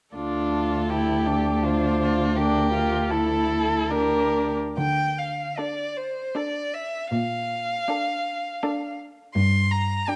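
A rich, smooth first violin carries the yearning, elegiac melody up front, its even vibrato singing over a slow, rubato string quartet movement in D minor and 3/4 at 66-83 BPM. A second violin adds an expressive inner line with vibrato and portamento from a more distant place, the viola's warm, sliding accompaniment fills the middle, and a dark, woody cello holds the bass until 9.9 seconds. Close, detailed microphones and light reverb frame this brief passage cut from a longer piece, whose harmony moves from D minor through G minor over D, and a second section beginning at 4.8 seconds later reaches B-flat major seventh.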